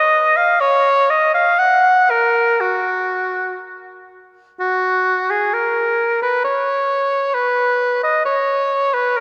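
A church acoustic with a long, wet reverb surrounds this serene, dance-like passage from a baroque-style classical fantasia for solo oboe, in F# major and a rubato 3/4 at 59-67 BPM, tuned to A4 = 439 Hz. The oboe sits up front from 0.0 to 9.2 seconds, its clear tone carrying vibrato and a smooth top as it moves between F#4 and F#5. The phrase falls into two parts, with the second starting at 4.6 seconds.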